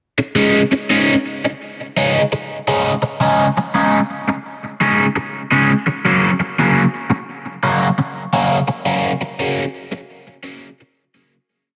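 A moderate spring reverb surrounds this short rock piece, giving it a hazy, hypnotic air. The only part is a cranked stack electric guitar, bright and overdriven, double-tracked and placed up front, entering at 0.2 seconds. It plays short, syncopated picked chords in a straight 4/4 groove, treated with phaser and tape echo. The harmony sits on Absus4 before moving to Gb at 5.7 seconds. A fade-out begins at 8.5 seconds and carries the guitar to the close.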